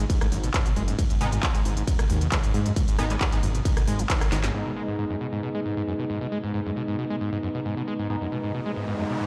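Relentless and dark, this driving peak-time techno cut from a longer piece runs at 135 BPM in a straight 4/4, sitting on G# minor throughout. It opens on a drop, where a distorted, up-front electronic kick and a layered techno kit of cracking snare, smooth low-pass-filtered hats, crash and ride cymbals, handclaps and rim clicks pound beneath a deep, rumbling detuned saw bass that pumps against the sidechain. Over them a squelchy, gritty acid bass riff, resonant and saturated with a filter sweep, subtle chorus and delay, runs the full length of the passage. From 1.2 s a bright sync-sweep polysynth adds edgy, nasal stabs with chorus and delay, and a band accent at 4.1 s and a drum fill at 4.3 s close the first half before the kick, kit and saw bass drop out. The second half leaves the acid riff and polysynth stabs pumping on their own until an electronic riser enters at 8.3 s, all set in a lush hall reverb that sounds like a big sound system in a bare room.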